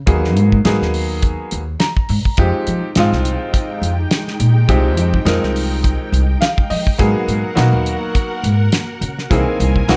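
Nocturnal and slick, this short excerpt of electric jazz fusion moves at 104 BPM in 4/4 with a light swing on the sixteenths, cut from a longer piece. A dry, damped 70s drum kit sits up front with a fat snare, tight kick and hi-hat, beside a woody, growly upright bass played pizzicato, its steel strings giving a bright edge. A brilliant, worn grand piano with short sustain comps through the changes from Abm9 to Fm9 and back, dropping in fills at 1.5 and 6.1 seconds. From 2.4 seconds a string machine cello patch adds soft-attack sustained chords, vintage and sawtooth-based with a sub octave and ensemble chorus, sitting mellow and low in the mix. Light reverb frames the band, and a C7alt chord near the close leaves the passage hanging.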